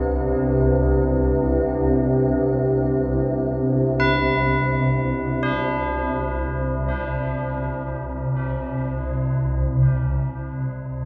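A cavernous, echo-heavy chamber holds this unsettling dark ambient drone in free time, where an up-front swarming drone, detuned and ring-modulated with granular texture and phaser, sits beneath a deep, moody analog pad sustaining a G/C chord with chorus until 9.9 s, while solemn, metallic tubular bells ring out arpeggios through dub echo, the excerpt closing on a bare C5 chord.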